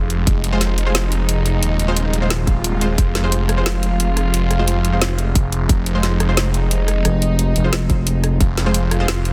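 Dark technical drum and bass at 177 BPM in F minor, this tense, futuristic excerpt rests on a single F minor chord, with distant, floating strings holding sustained chords and a swirling, thick detuned saw bass, saturated and phased, pumping up front alongside them. A tight electronic kick hits in short bursts over a kit of woody snare, rim click and bright hats, while bold, punchy orchestra-hit-like stabs sit in the background with reverb and tape echo. A faint electronic swell enters at 2.4 seconds, and a growling FM bass pushes forward on F1 from 7.0 seconds in a dense, heavily limited mix with digital ambience.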